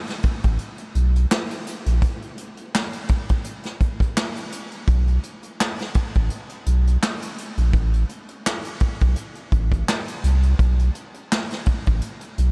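A deep, full sub bass with an added octave sits up front, its sine-and-triangle tone mellow and sustained over a fast attack from 0.4 seconds. A vintage brush drum kit, natural and rolled-off at the top, carries a punchy kick, medium-tuned snare, hi-hat and handclaps with a gentle swing, with a break between 2.0 and 4.9 seconds. This moody, dark boom-bap hip-hop excerpt sits in light reverb, giving the studio-room drums a close, intimate feel.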